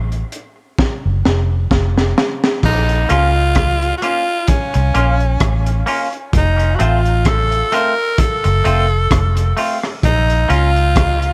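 A round, foam-muted electric bass and a gritty, saturated breakbeat kit with dark cymbals and a high-tuned snare open this hypnotic, deep dub reggae cut at a slow 65 BPM with a lightly swung 16th feel, the drums rolling through a fill from 0.8 seconds before a raspy tenor saxophone with scooped notes and dub echo takes the lead at 2.7 seconds, joined at 3.1 seconds by a bright, clean semi-hollow guitar also treated with dub echo, all moving over Bb minor and F chords in a small room.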